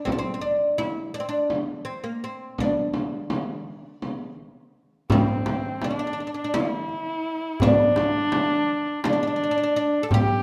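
Turkish makam ensemble music in 7/8 with a straight feel, longing and melancholic in mood, cut from a longer piece. A woody, plectrum-plucked fretless oud with double strings carries the melody up front from the start, over a deep, large frame drum struck with hard hands that sounds distant yet sits forward. At 5.1 s a dark, nasal, boxy kamancheh enters on a bowed second line with expressive vibrato and portamento, joined by a crisp metal-shell darbuka, all set in a moderate scoring-stage reverb.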